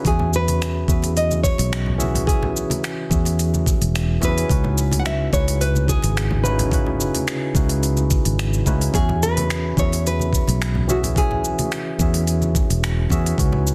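A straight 4/4 groove at 108 BPM drives this sunny, relaxed sunset chillout excerpt in E major, with a knocking, tape-toned electronic kick and a smooth R&B kit of finger snaps, hi-hat and shaker, both set in studio reverb, the kit's snare softly clipped, beneath a round, foam-muted fingered bass, a clean, barky tine electric piano heard through its built-in speakers with tape echo, faint ringing congas in a live room, and a dark, full-bodied fingerpicked nylon-string guitar melody with delay over E6 and C#m11 chords, held in a dense, heavily limited modern master.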